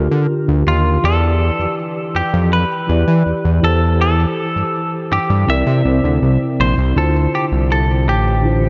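Contemporary R&B in D minor at 81 BPM, sensual and longing, cut from a longer piece, where a clean, picked semi-hollow electric guitar carries the melody with tape echo up front, a mellow tine electric piano plays the chords, and a fat, detuned sawtooth analog bass with a filter sweep sits thick beneath, all in a dreamy mix soaked in cathedral reverb, moving from Gm7/D through Em7, Am7/E and C7 before a second section opens on Dm7 at 7.0 seconds.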